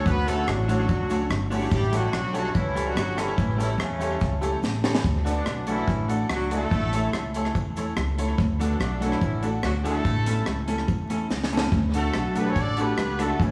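A straight 4/4 ska rhythm at 144 BPM in D major drives this cheerful, upbeat passage from a longer piece, with a clear horn section in light vibrato and octave doubling carrying the melody up front beside a woody, thumpy pizzicato upright bass on gut strings. A dry, deep reggae drum kit with a high-tuned snare, tight kick, hi-hat and rim click carries dub echo, as does a twangy, picked clean electric guitar. A jangly, metallic tack piano adds stabs in the background, a very quiet, grainy cabasa ticks along, and drum fills arrive at 4.6 and 11.3 seconds. The band plays live in one room, wrapped in lush studio reverb with a touch of vinyl crackle.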